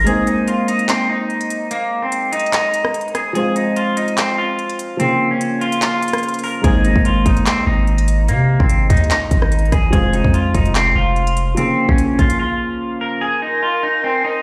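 A bright, twangy clean electric guitar melody, lushly chorused and delayed, opens this melancholic, dark half-time trap fragment over a mellow baby grand piano, joined by a crisp trap drum kit with a hard-clipped kick up front, a deep sine 808 bass that sounds briefly at the start and returns at 6.6 s, and an airy, breathy pad entering at 13.2 s, the mix ringing through a big sound system in a bare stone room.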